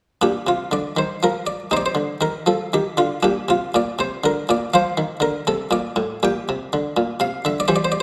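A buff-stop harpsichord plays alone from 0.2 to 8.0 s, its muted, lute-like pluck sitting up front, ranging from A2 to G5 in this flowing, dance-like fragment of a baroque-style suite movement. The music moves in 3/4 at 120 BPM with a rubato feel in Bb major, passing through Bb, F5/C and Gm/Bb harmonies. A moderate recital hall reverb surrounds the instrument's airy Flemish-style tone.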